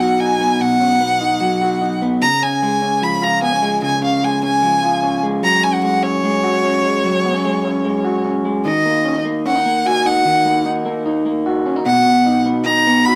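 Bright and nostalgic, this indie pop fragment moves at 149 BPM in a straight 4/4, with a twangy, slightly broken-up electric guitar picking arpeggios through a small old amp beneath a smooth, close violin melody played by one bowed player with vibrato. Both parts sit up front for the full 13.2 seconds in a moderate studio reverb, as the harmony moves from B through C# and F#sus2 before shifting at 8.7 seconds to D#m and then returning to B.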